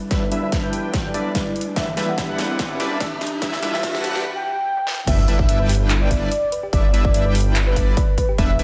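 A half-time 4/4 groove at 145 BPM with a light 16th-note swing drives this euphoric, playful future bass cut in G major, built on a punchy, up-front electronic kick and a big-room dance kit of crash, handclaps, hi-hat, toms and a huge snare, with a thick, detuned saw bass sitting mellow in the background. A velvety lead with vibrato carries the melody over a fat, bright sawtooth polysynth riff, while a soft, round, dark pluck accompanies and a background riser and impact rise through a filter-swept build-up with drum fills. At 5.1 seconds the drop hits with the impact, and a very quiet, tine-like thumb-piano pluck adds arpeggios under the pumping synths, all set in light digital ambience.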